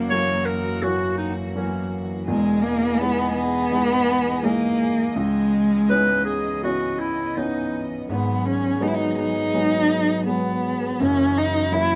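An acoustic folk-pop ballad in G# minor moves at an unhurried 83 BPM in a straight 4/4, carrying a reflective, melancholic mood through this short cut from a longer piece. A single bowed cello leads the melody up front, its dark, expressive tone shaped by vibrato and portamento and rounded off with a smooth top. An upright piano accompanies with a clear, woody, natural sound spanning a broad register, while a chamber string section holds soft-attack sustained chords beneath, intimate and close, with light vibrato. A bright classical-style clarinet adds a second line from 0.1 to 7.9 seconds, soft in attack and roomy in character. The harmony drifts from F#7 through Emaj7, C#m9 and G#m7 before returning to F#7, all captured as a band playing live in one room with moderate studio reverb.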